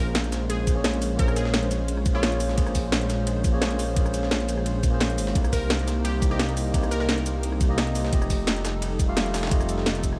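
Liquid drum and bass at 173 BPM in Bb dorian, this short excerpt has a rolling, lush mood as it moves from Bbm9 to Cm7 at 5.4 seconds and F9 at 8.1 seconds. A dark detuned saw bass sits up front with a deep, rumbling, beating tone, while a clean tine electric piano heard through built-in speakers carries the accompaniment and an airy, breathy pad holds sustained chords in the background, its chorus and sidechain pumping giving it motion. A glassy wavetable pluck states the melody in two brief phrases, from the start and again at 5.5 seconds, its crystalline, bright tone colored by chorus and digital delay. The drums stack a knocking, tape-warm electronic kick up front, entering at 0.7 seconds, with a produced kit of cracking snare, metallic hats, ride, rim click and cabasa. Beneath them a gritty, pitched-up breakbeat kit with a high-tuned snare sits in the background, its cymbals, hats and snare thinned by high-pass filtering, and a light reverb adds a digital ambience.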